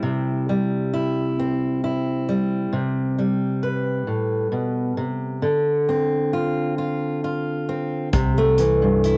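A fingerpicked steel-string acoustic guitar sits up front with a warm, cassette-tinged tone, carrying this nostalgic, tender folk-pop ballad alone at a slow 44 BPM in a straight 6/8 through C, Am9 and Dm7. At 8.1 s a round, dark electric bass and a natural country kit of hi-hat and punchy kick join as the harmony settles on C6. Light reverb gives the short home-recorded cut a homespun feel.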